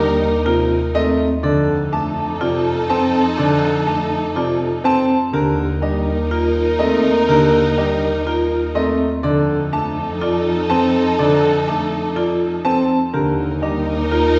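Urgent and hypnotic, this 123 BPM minimalist classical pattern music cut from a longer piece sets an open-toned baby grand piano melody over a mellow, lightly vibrato French horn second line in the background, a dark baby grand piano accompaniment that stops at 13.9 seconds, lush bowed symphonic strings sustaining chords with soft attack and portamento, metallic, ringing vibraphone arpeggios under medium mallets with fast motor vibrato, and a smooth, even chamber double bass section, all cycling between Cm11/Eb and F7 in the wet reverb of a church or concert hall.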